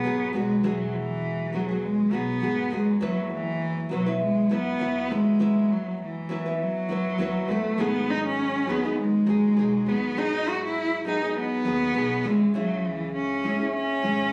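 Sunny and easy-going, this acoustic pop excerpt moves at 101 BPM in 4/4 with a light swing on the sixteenths, settled in E major. A single bowed cello carries the melody from start to finish at 14.3 seconds, its focused tone sung with vibrato and a smooth top, sitting up front. Beneath it, a fingerpicked nylon-string guitar supplies warm, small-sounding accompaniment, also forward in the picture, while a pizzicato upright bass with gut strings adds a woody, thumpy low end at a lower level. The harmony moves from Eadd9 to Bsus4/F# at 3.0 seconds, then to G#m7 and C#m. Light reverb and small room ambience frame the players, and the sound has the casual closeness of a phone capturing the room, touched with studio reverb.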